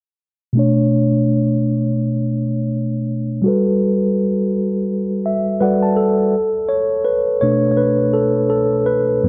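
The rhythm sits at 83 BPM in 4/4 with a gentle swung sixteenth-note feel, giving this short R&B excerpt in B minor an unhurried, late-night sway. A mellow tine electric piano plays alone from 0.5 s, its clean, direct tone placed up front and spanning a range from low bass notes to bright upper register. The harmony moves from Bm9 to Gmaj9 at 3.4 s, and a filter sweep colors the opening passage while the piano adds a fill from 4.9 s. At 6.3 s the music settles onto Bm7 as the piano takes a solo turn until 9.3 s. Light reverb and a dark, low-pass-filtered production wrap the sound in a hazy softness, leaving a longing, sensual mood.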